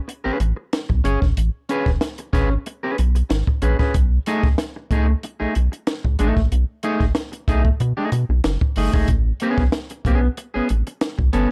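A straight 4/4 funk groove at 93 BPM drives this sly, dark fragment, where a punchy, dry cocktail drum kit with a high-tuned snare and a rubbery, nasal square-wave bass with a filter pluck sit up front alongside a twangy, slightly broken-up electric guitar that voices a rootless Amaj9 before moving to B13 at 3.9 seconds and back to Amaj9 at 9.1 seconds, all in a studio reverb.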